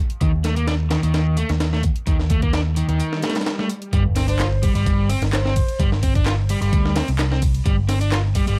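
Energetic and gritty, this short excerpt of swung breakbeat at 129 BPM drives on a compressed, pitched-up sampler kit with a thumpy kick and high-tuned snare, layered with a quieter overdriven house kit with bright hats, claps and ride, while a round, punchy picked bass sits up front beneath a dark overdriven semi-hollow guitar riff with dub echo; a background swell and sub drop arrives at 3.2 seconds to herald the drop at 3.9 seconds, and a soft, breathy flute-like synth lead with chorus, vibrato, AM radio tone and dub echo floats in the distance, all dry and dusted with vinyl crackle.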